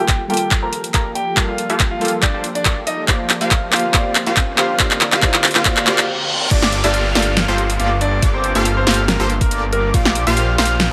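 Emotional and dreamy, this future bass excerpt runs at 140 BPM in a half-time 4/4 feel with a light swing, set in G minor and moving between Gm9 and Bb69 chords. A brilliant concert grand piano carries the melody throughout, backed by a punchy supersaw stab riff, both shaped by a low-pass filter and sidechain pumping. In the opening build-up, a soft, round pluck with lush chorus and dub echo and an ethereal pad with ensemble chorus fill out the harmony, while the supersaw's filter sweeps and a drum fill pushes forward, leading into a brief stop at 6.1 seconds. The drop lands at 6.5 seconds, where a thick, saturated detuned saw bass and an airy lead playing high arpeggios enter, both with chorus and pumping. Up-front, tape-tinged drums drive the track, with a knocking electronic kick and a dubstep kit of huge snare, bright hats, handclaps and crash, while faint risers, a reverse cymbal and a downlifter sit beneath a light reverb.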